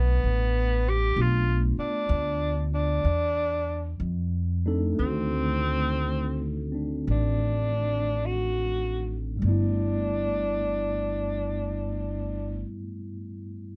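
Swung eighth notes in 4/4 set an unhurried, lilting pulse that slows between 1.2 and 9.4 seconds. This late-night, romantic jazz ballad features a breathy tenor saxophone up front as the soloist. Its whispered subtone carries the melody with vibrato, soft attacks and scooped notes for an intimate, vintage character. Beneath it, an upright bass, also up front, is played pizzicato on steel strings and gives a woody, acoustic foundation. A clean tine electric piano, heard through its built-in speakers, supplies the accompaniment and is the last part sounding, carrying on until 13.8 seconds. The harmony moves from G69 through Bm7b5, Dm9/E and D7b9 before returning to G69, with light reverb around the sound in this passage cut from a longer piece.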